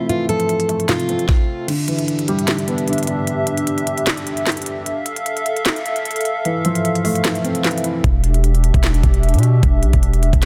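A heavy, distorted 808-style bass crashes in at 8.0 seconds to close this menacing, melancholic half-time trap excerpt, where a brief fingerpicked steel-string acoustic guitar melody with tape echo opens over a dark, felt-muted upright piano, a hollow, flute-like chorused pad and a crisp, knocking trap kit of kick, sharp snare, hi-hat, handclaps and crash whose kick drops out at 1.7 seconds, all in a dry, dense, heavily limited mix.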